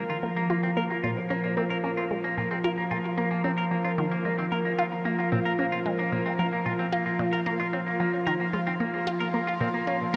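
Ambient, sequencer-driven space music at 112 BPM in 4/4, this expansive, cosmic excerpt rests on a Bb5 chord, with a swirling, detuned sawtooth analog pad holding sustained chords up front through phaser and chorus while a bright, twangy clean electric guitar picks arpeggios through tape echo. A juicy, squelchy blip pluck plays a resonant riff with phaser and tape echo, and a bubbling stepped-filter texture with chorus and its own reverb sits in the background. A huge reverb with a 7.0-second tail and worn, warbling cassette tape with pitch drift colour the whole 10.2 seconds.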